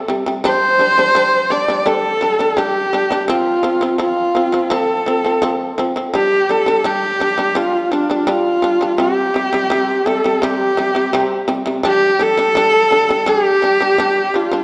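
Windswept and vast, this Mongolian folk passage, lifted from a longer piece, puts a clear, husky horsehead fiddle up front on the melody, bowed with vibrato and portamento. Beside it, a buzzing, percussive shamisen plucks powerful arpeggios, while a breathy bamboo xiao traces a tongued second line with its own vibrato in the background. A wet scoring-stage reverb wraps the trio in a dark, warm production.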